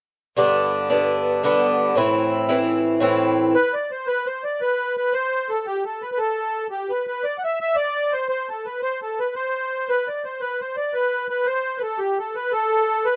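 A rollicking 9/8 jig-time lilt at 114 BPM drives this bright Celtic folk fragment in G major, where an up-front Irish bouzouki with metallic, picked double strings picks out G and Am from 0.4 seconds before giving way at 3.5 seconds to a reedy, sweet accordion melody with light tremolo tuning that carries on alone until 13.2 seconds, all set in a small room's modest reverb with a rough home-demo feel.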